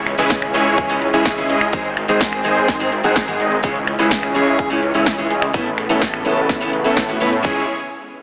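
Emotional and powerful, this festival progressive house excerpt at 126 BPM in C# minor cycles through C#m, G# and Aadd9 under a huge ambient reverb and an AM radio tint. Bright, detuned supersaw chords lead up front with a filter sweep, sidechain pumping and digital delay, while a picked jumbo steel-string acoustic guitar with audible finger squeak adds its own delay and pump. Deep in the background, a veiled, con sordino string section also carries a filter sweep, a thick chorused saw bass pumps beneath, and a punchy layered electronic kick joins a big-room kit of snaps, metallic hi-hats and snare.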